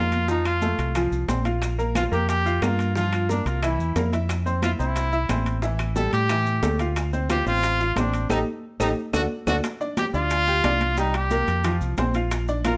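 Driving and fiery, this salsa passage moves at 180 BPM in G minor, with a clear, punchy trumpet carrying the melody up front over a brilliant baby grand piano with short sustain and a dark, round fingered electric bass. Behind them sit high-tuned congas heard from a distance in a large room, ringing metal-shell timbales, grainy maracas, very quiet low-tuned bongos struck with hard hands, and faint woody claves that drop out at 9.6 seconds. A drum fill and band accent between 8.3 and 9.6 seconds lead back into the opening section, all under light reverb.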